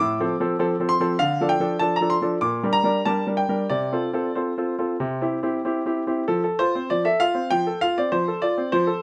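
Classical-period piano sonatina in 4/4, elegant and graceful, played by a solo grand piano with a clear, present tone sitting up front in a lightly reverberant space. The phrasing flows with gentle rubato across a range from A2 to D6, moving through F/A, Dm, Gm/Bb and F/C to a C chord before a new passage opens on F at 6.3 seconds. The fragment is cut from a longer piece and stops at 9.0 seconds.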